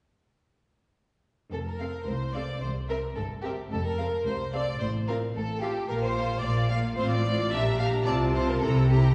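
A straight 2/4 pulse at 110 BPM drives this quick, graceful and cheerful classical-period movement for string orchestra in F major, cut from a longer piece. At 1.5 s the clear, intense second violins come in up front alongside a focused cello section and a rich, even double bass section with light vibrato, the lower strings sounding somewhat distant. A moment later, at 1.8 s, the melody arrives in a lush first violin section with a smooth top, sitting in the background, while a rich, smooth viola section fills in the accompaniment. The harmony moves between F and C7, passing through Bb5 and Gm/Bb before settling toward F/C and a closing C7 at 8.6 s. A scoring-stage reverb with a 1.8-second tail places the ensemble further back in the room, adding a touch of small-room ambience to the bowed vibrato sound.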